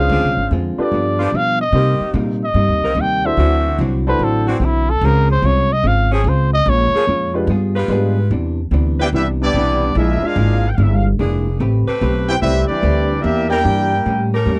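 A swung 4/4 pulse drives this joyful big band swing excerpt, with woody pizzicato upright bass, a dark, compressed hollow-body electric guitar and smooth sustained chords from a saxophone section running throughout, while a natural-sounding grand piano adds accompaniment. A veiled, cup-muted trumpet with vibrato carries the melody solo until 7.4 seconds, and at 9.0 seconds a clear trumpet section takes up the tune as a loose trombone section with light vibrato and slapback echo plays a second line. The recording is dry and close, in a 1970s studio style.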